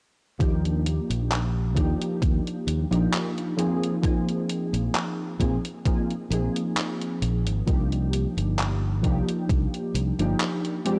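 Warbling, detuned synth keys float through this short vaporwave excerpt, their dark pulse-and-sawtooth tone sitting up front with a quick attack that decays into the haze, thickened by ensemble chorus and analog delay. The mood is hazy and melancholic at a slow 66 BPM in 4/4, with a slight swing on the sixteenths. Underneath, a round, direct fingered electric bass holds the low end, while a thumpy, sampler-style electronic kick sits prominently in the mix with a touch of studio reverb. A detuned 8-bit drum machine adds handclaps and hi-hat further back, its tape-softened sound also wrapped in studio reverb. The harmony drifts from Ebmaj9 to Bb7sus4 at 3.6 seconds and settles on Cm11 at 7.7 seconds. The overall sound is dry and gritty, carrying a cassette-tape character with light digital ambience, as if lifted from a longer piece.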